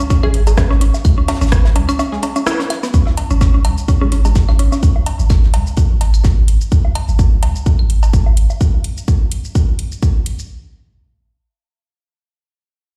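A punchy, up-front electronic kick drives this sparse, quirky minimal techno excerpt alongside a deep sine sub bass with a pitch-drop attack and sidechain pumping, a woody FM mallet-like pluck riff with chorus and tape echo, and a muted, detuned dub chord stab treated with phaser and dub echo. A house kit with metallic hats, rim click and shaker, a dry damped 70s kit with a fat snare in the background, and analog bongos, claves, woodblock and cowbell fill out the groove, set in a large studio reverb as if played on a big sound system in a bare room. After a break and a band accent at 2.5 seconds, filter sweeps move across the pluck and the stab from 2.9 seconds, and the pluck stops at 4.7 seconds while the house kit carries on to 10.5 seconds.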